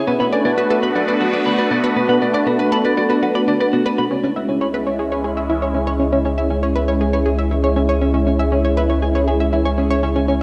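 A dark, warm production sits in a lush hall reverb with a long tail, giving this cut from a longer piece of ambient, sequencer-driven space music a luminous, cosmic glow in steady 4/4. A bright, detuned pad of sawtooth and sine tones carries sustained chords up front, its resonant filter swell and slow attack making the harmony feel alive and evolving under a chorus sheen. Beside it, a round analog pluck with a sub octave and fast, short-decay filter snap repeats a riff, treated with chorus and tape echo. A clean, picked electric guitar plays dark arpeggios high above, colored by tape echo, and fades in through the second section from 4.1 seconds. At that point a deep, mellow analog bass holds a single low note under the move from Bm7 to C#m, anchoring the drifting texture.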